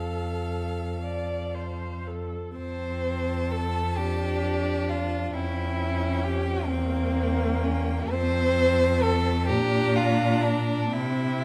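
A string quartet opens together on an F major chord in this excerpt from a slow, lyrical romantic movement in 6/8, moving at 43 beats per minute in dotted quarters with an uneven, rubato feel. The first violin carries the tender melody high between F5 and Bb5, its rich, close tone shaded with vibrato yet sitting softly in the balance. The second violin plays a smooth, even second line from C4 to C5, placed up front, while the viola's accompaniment sounds distant and expressive, sliding with portamento between Bb3 and D5. The cello anchors the bass from E2 to C3 with a clear, steady, bowed sound that also stands up front. The harmony passes from F through Edim7 over F at 5.4 seconds, back to F, then to Bb and arrives on C at 10.9 seconds, all bathed in a wet recital-hall reverb with a 1.5-second decay and tuned to A4 = 438 Hz.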